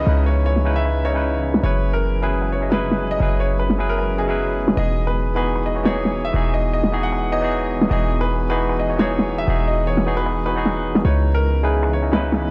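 Future bass at 153 BPM in a half-time feel, this euphoric, lush excerpt in E major moves through C#m7, F#9sus4 and Emaj7 chords, with an intimate concert grand piano carrying the melody through a digital delay, its action noise audible, over a barky, lightly overdriven tine electric piano pushed up front with tape echo. A shimmering, detuned ambient pad with an ethereal octave-up shimmer and chorus sustains chords in the background, while a deep, boomy 808-style bass sits up front and a very quiet downlifter ends by 1.6 seconds. From 0.6 seconds, layered electronic drums with a huge, overdriven snare and finger snaps, low-pass filtered and re-recorded in a small room, play in the background under light digital ambience.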